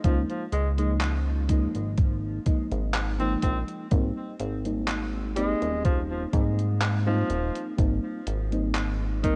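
Vaporwave with a faded, woozy mood, this short fragment of a longer piece runs for 9.4 seconds in a straight 4/4. A tenor saxophone carries the jazz-style melody with light vibrato, its vintage tone roughened by 12-bit sampler grit and trailed by tape echo. Beneath it, a mellow FM electric piano offers soft, round, dark accompaniment through subtle chorus and analog delay, while a glossy, nasal synth bass with a filter pluck and tube saturation sits up front. A thumpy electronic kick is also placed up front, joined by a gated 80s drum machine playing handclaps and hi-hat, both carrying the same sampler grit. The harmony moves from Db69 to Abmaj7 at 3.9 seconds, and the whole recording sounds like a worn cassette, with warbly pitch drift and light digital ambience.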